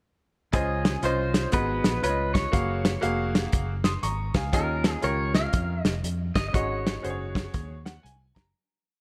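A punchy, up-front soul drum kit drives this soulful, jubilant uptempo gospel piece at 120 BPM with a swung two-beat praise groove, its dry sound set in a pumping room. Round, amped fingered bass walks and runs beneath a clear, worn grand piano pushing drop-2 chords with grace notes and short fills, while a bright, twangy, picked electric guitar plays call-phrase motifs over chords moving from Dbmaj9 to Ab7sus4. The dark, lightly reverberant mix fades out from 6.5 seconds, the guitar stops at 8.0, and a piano fill closes the piece.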